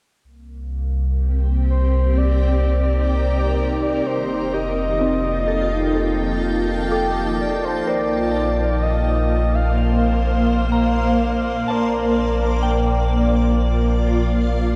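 A deep, round sub bass opens this weightless ambient passage, soon joined by a calm organ-like drone in the background and a cloudy, blurred granular pad whose slow-attack chords drift through Cm7, F9 and Bbmaj9 under shimmer reverb. A breathy, flute-like synth lead with vibrato carries the melody from 1.7 s to 13.6 s, bathed in chorus and tape echo. From 4.5 s, a soft, pure FM bell adds decaying arpeggios behind it, all set in a dark, warm production with a huge, wet reverb.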